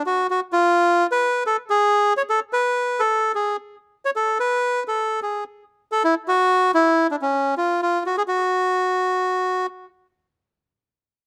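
A reedy, up-front bandoneon plays alone from 0.0 to 9.7 seconds in this melancholic, dramatic tango excerpt in F# minor, moving with a rubato feel around 127 BPM in 4/4, its line ranging from C#4 to C#5 under a slapback echo in a dry outdoor setting.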